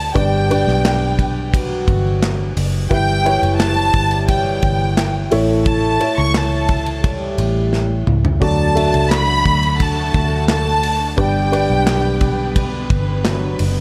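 A lush, vibrato-rich violin section carries the melody up front in this uplifting, hopeful piano-driven pop excerpt, which moves at an unhurried pace in a straight four. Beneath it, a dark upright piano supplies woody, boxy accompaniment with audible action noise and long sustain, while a foam-muted fingered electric bass sits up front and punchy with a round, amped tone. A modern acoustic drum kit with a tight kick, medium-tuned snare and rolled-off top works through hi-hat, ride, splash, toms and handclaps, and plays a fill from 7.7 to 8.4 seconds. A mellow, distant French horn section traces a second line in the background, touched by digital delay. At 8.4 seconds a string section enters with sustained chords, as the harmony moves from G through Em and A to D and back to G, all within light reverb and small-room ambience.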